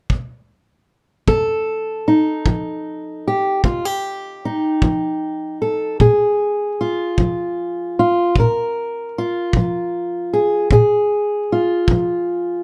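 A dark, fingerpicked steel-string acoustic guitar with audible finger squeak comes in up front at 1.3 s over a punchy, roomy kick drum played with brushes that starts at 0.1 s, giving this short cut from a longer acoustic country blues piece a rollicking yet laid-back feel at 51 BPM in 12/8, with the guitar moving from F7 to Bb5 at 6.0 s under light reverb.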